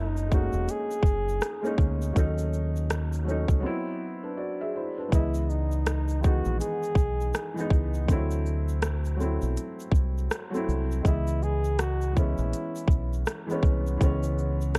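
Lo-fi hip hop at 81 BPM with a lazy 16th-note swing, this hazy, nostalgic excerpt sets a mellow, jazz-style flugelhorn solo, with light vibrato, delay and a filtered haze, over soft, felt-muted upright piano chords that move from F#69 through D13/F#, C#m9 and D9. A round, punchy dub bass sits up front beside a tight, produced electronic kit of crisp hats, kick, rim click and shaker, while a grainy egg shaker ticks faintly in the background. The dark, warm mix has a small-room reverb and a brief break at 3.6 seconds, and the horn drops out at 13.3 seconds, leaving the rhythm section to carry on.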